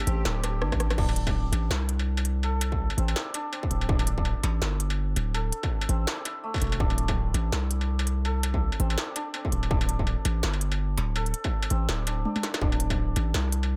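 A deep, up-front 808-style bass holds long sine notes with a fast attack and decay beneath this tense, cinematic half-time drum and bass passage, cut from a longer piece. Bright, lush bowed cellos with vibrato and sidechain pumping sit in the background only until 1.0 seconds, when a drum fill gives way to the drop, while a hammered santur rings and shimmers in delayed arpeggios throughout. An industrial kit of clanging snare, smooth hats, rim clicks, struck metal, toms and crash, tape-colored and re-recorded in a large room, swings over a distorted electronic kick that enters at 0.7 seconds, in a dry mix.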